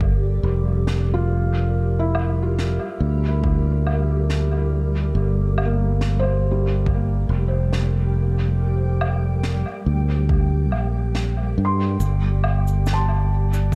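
A growly, punchy fingered electric bass sits up front in this deep, hazy ambient dub fragment, over a tape-warm electronic kick, a blurred granular cloud pad holding dark sustained chords in its own reverb, and a felt-muted upright piano playing soft arpeggios through tape echo with audible action noise, while a brushed snare, woodblock and cabasa drift in at 0.9 seconds through dub echo in an echo-heavy small-room mix.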